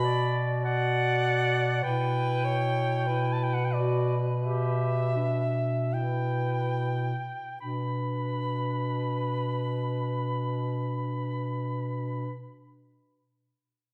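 The rubato 4/4 pulse drifts between 33 and 51 BPM and slows through the first 7.6 seconds of this elegiac, solemn classical excerpt for single-reed quartet in B minor, moving from Bm to Em/B and back to Bm at 7.6 seconds. Up front, a soprano saxophone with light vibrato sings the melody while a punchy bass clarinet holds a low B beneath it. A clear, distant alto saxophone with vibrato carries a second line, and a soft-attack clarinet murmurs its accompaniment in the background, all sharing the roomy glow of a wet scoring-stage reverb.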